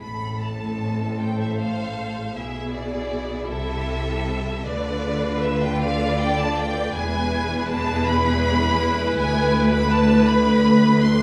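The cello section stands out with a rich, lush, expressive vibrato beneath a distant violin melody in this solemn, melancholic slow romantic movement for string orchestra in A minor, moving in a rubato 6/8 at about 49-55 BPM, where a smooth second violin line, a clear, intense double bass section and, from 1.2 s, a close, even viola accompaniment fill out chords that pass from Am toward E, all carried by a recital hall reverb in this excerpt from a longer piece.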